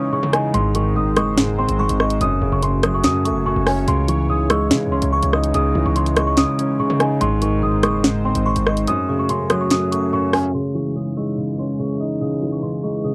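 Sharp snare, bright hats and rim clicks from an up-front electronic drill kit drive this dark, cold half-time hip hop excerpt alongside a heavy, saturated 808-style bass that drops out at 8.9 seconds, while a delicate, airy celesta melody and a crystalline FM bell line with chorus and tape echo float over a mellow, long-sustaining baby grand and a detuned sawtooth pad with chorus, all coloured by worn, warbling cassette tape and a low-pass filter, and the drums fall away at 10.4 seconds.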